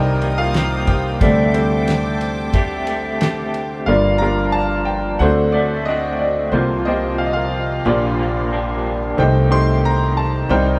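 A straight 4/4 pulse at 90 BPM carries this intimate, melancholic acoustic folk-pop ballad in G minor, cut from a longer piece. A cloth-damped, thuddy drum kit with a tight kick, fat snare and dark ride cymbal plays only from 0.2 to 3.7 s, while a woody, thumpy pizzicato upright bass holds the low end throughout. Up front, a clear grand piano with a worn character and long sustain carries the melody over picked arpeggios from an electric guitar through a small old amp, its slightly broken-up, lo-fi tone shimmering with tremolo. Behind them, a dark chamber string section sustains soft-attack chords played sul tasto with light vibrato. The harmony moves from Cm7 and D7sus4 through Gm7, D7, C7sus4 and Gm7/Bb to Am7b5/C. The band sounds as if it is playing live together in one room, with moderate large-studio reverb.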